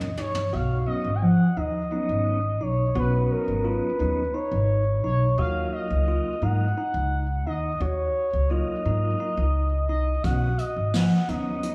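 A dark, gliding synth lead sits up front in this brooding progressive instrumental cut from a longer piece, its sawtooth-and-triangle tone carrying vibrato, chorus, slapback and tape echo as it sings the melody between Bb4 and Ab5. The band moves in 7/8 at 173 BPM counted in eighths, with a straight feel, and the harmony shifts from Ebm7 to Badd9, then Ebmadd9 at 5.4 seconds, before returning to Badd9. A tonewheel organ with audible key click and a fast-spinning rotary speaker fills in smooth chords underneath, while a clean tine electric piano, heard through a combo amp with its own slapback and tape echo, weaves intricate arpeggios from 0.2 seconds. A woody pizzicato upright bass stands forward in the mix. A brushed jazz kit with a boomy kick opens with a short fill and drops out, then re-enters at 10.2 seconds. A lush hall reverb lends the whole band a big arena sound.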